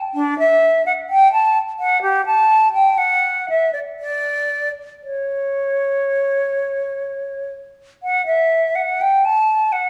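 A bright silver concert flute plays alone throughout this short cut from a baroque-style classical fantasia, its airy, metallic tone shaped by expressive vibrato and soft attacks as it moves between D4 and A5. The mood is flowing and radiant, with a free, rubato pulse hovering around 58-65 BPM in 4/4 and tuning set to A4 = 436 Hz. The flute sits up front with lifted highs, surrounded by the lush bloom of a recital hall reverb lasting 1.5 seconds.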